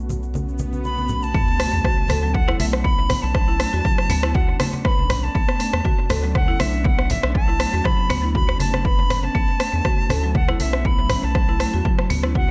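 An airy, ethereal pad and a round, deep analog bass open this driving, spiritual afro house excerpt, joined almost at once by low-tuned congas and a grainy egg shaker while a background swell builds toward the drop. At 1.3 seconds an impact lands as a punchy, overdriven electronic kick enters, with a deep house kit of hi-hat and rim click arriving just after, and the harmony moves from B7sus2 to Bm9. A reedy silver concert flute, bright and pure with vibrato and a soft attack, carries the melody high above, roughened by vintage 12-bit sampler grit and trailed by analog delay. Beneath it a buzzing marimba struck with hard mallets spins woody arpeggios, while sidechain pumping makes the pad, bass and marimba breathe against the kick. The echo-heavy mix sits in a small room with light reverb, the congas kept close and dry in the background.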